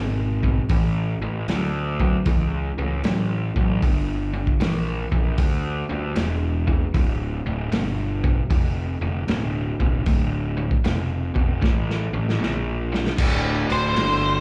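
A growly, fuzz-laden electric bass sits up front in this gritty, brooding excerpt of blues rock and southern rock, its picked, overdriven tone bright and raw as it holds down the low end. Beside it, a double-tracked garage guitar plays a bright, overdriven riff in a low register, moving from A to Gm to Dm over a slow, swung 4/4 feel. A vintage acoustic drum kit, muffled and lo-fi with dark cymbals, a tight kick and a medium-tuned snare, keeps time on hi-hat, kick, snare and crash, then breaks into a fill at 11.6 seconds. At 13.2 seconds the music shifts to a D7 chord and a lead guitar solo section begins, and at 13.7 seconds a distorted, octave-fuzz lead guitar steps up front on a high C with slapback echo. The whole performance carries the feel of a live club gig heard through the venue's PA, wrapped in small-room ambience and club reverb.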